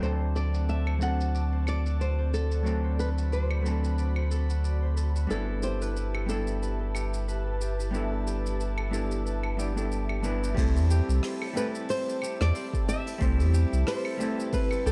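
Blissful and warm, this sunset chillout excerpt moves at 91 BPM in 4/4 with a gentle 16th-note swing, settled in G major. A fingerpicked flamenco guitar carries the melody with audible finger squeak and a touch of delay. Beneath it, a clean, dark hollow-body jazz guitar plays accompaniment and a ringing concert harp spins arpeggios, both passed through delay and a low-pass filter that sweeps until 10.6 seconds. A round, deep sine sub bass sits up front, while an airy, breathy pad with chorus and phaser holds sustained chords in the background, and a soft brush kit adds claves, shaker, rim clicks, hi-hat and dark, filtered cymbals. After the harmony moves from D7 to G69, a punchy, layered electronic kick enters at 10.6 seconds as the chords arrive at C6, giving the dusky, small-room mix a firmer pulse.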